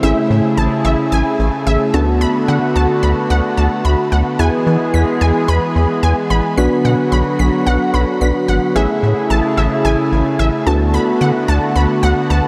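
A rubbery, hollow square-wave bass sits up front in this nostalgic, wistful pop piece, under a shimmering, retro pulse-width pad that holds sustained chords across Amaj7, D6, E and Bm. Muted, felt-like synth keys with chorus add soft, intimate accompaniment, while a bright, lush unison pluck spins high arpeggios through analog chorus and delay. A huge ambient reverb soaks the whole mix in a dreamy haze.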